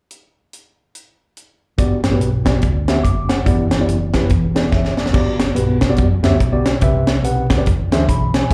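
A tight funk drum kit opens this uptempo gospel piece alone, its high-tuned snare, tight kick, hi-hat and crash sounding natural and up front at 143 BPM with a swung feel in G major. At 1.8 seconds a mellow tine electric piano enters, clean and close with plate reverb and slapback echo, alongside a dark, round hollow-body electric bass, moving through Gmaj7, Em7 and E7 before a drum fill at 4.7 seconds leads back into Gmaj7, then Cmaj7 and E7b13. The soulful, reverent mood carries the feel of a live club gig heard through the venue's sound system, with light reverb around this short cut from a longer performance.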